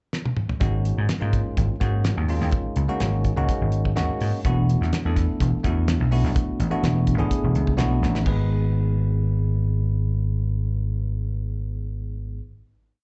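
A vintage slap bass anchors this slick, funky electric jazz fusion piece at 126 BPM, its amped, punchy syncopated riff sitting up front beside a damped 70s drum kit. After a pickup fill, the kit's dry, fat snare, tight kick and rolled-off cymbals drive a funk groove from 0.6 seconds. A bright, bell-like tine electric piano adds clean syncopated stabs in rootless voicings with slapback echo, moving from G#9sus4 to E9sus4 before bass and piano hold a final G#m chord from 8.3 seconds, all heard as a live club gig through the venue's PA with small-room ambience, club reverb and a muffled top end.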